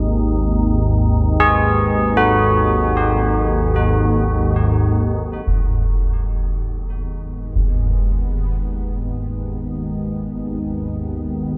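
Bronze carillon bells ring out delayed arpeggios from 1.4 s over a detuned, organ-like drone in G# minor in this unsettling, dark ambient drone piece in free time, cut from a longer work, where a concert bass drum with bright cymbals strikes at 5.5 s as the filter-swept drone fades in anew alongside an evolving, full-bodied sawtooth pad with chorus that enters at 6.3 s, the whole set inside a cavernous cathedral reverb.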